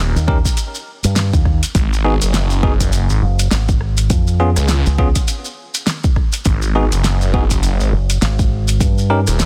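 Glitch hop at 102 BPM in G# dorian, funky and playful, with a swung sixteenth-note feel over a dry, dense and heavily limited mix. A swirling, thick phased saw bass with overdrive sits up front beside a round fingered electric bass through an envelope filter, while a punchy electronic kick and a pop kit with a fat snare, metallic hats and rim clicks drive the groove, and a grainy shekere adds texture. Bright, bell-like electric piano stabs pump against the sidechain and trail a digital delay over chords moving from D# through G#7 and C#, ending on D#7 at 8.8 seconds in this cut from a longer piece.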